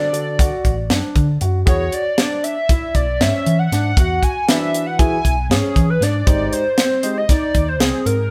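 Intricate and driving, this short cut from a longer progressive instrumental piece has a band playing together live in one room, moving in a straight 9/8 through chords of D, Eadd9 and G#maj7. A hollow, woody square lead carries the melody up front, its sustained, fast-attack tone coloured by ring modulation, vibrato, chorus and tape echo. Beneath it, a barky tine electric piano, lightly overdriven through a combo amp, plays the accompaniment until 7.2 seconds, while a dark grand piano with a mellow, vintage character and long sustain supplies arpeggios. A tight funk drum kit sits dry and prominent, with a high-tuned snare, a tight kick and hi-hat. From 0.7 seconds a round, amped hollow-body short-scale bass, picked, adds a dark low end, and light reverb ties the ensemble together.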